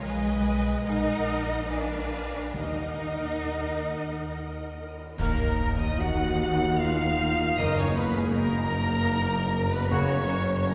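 In a rubato 3/4 at 66-79 BPM, this lyrical, serene slow romantic movement in Eb minor opens with the full string body: a rich, focused violin section sings the melody above a lush second violin line, background violas with portamento, up-front cellos and close double basses, all bowed with vibrato. At 2.5 seconds, hard-mallet timpani and a close cymbal swell with clash cymbals and concert bass drum join, and at 5.2 seconds an accent brings in an airy silver flute line, mellow distant French horns, very quiet smooth-topped trombones, punchy dark trumpet stabs and a background tuba on the bass. A wet church reverb surrounds this short cut from a longer piece, as the harmony settles from Ebm toward Gb.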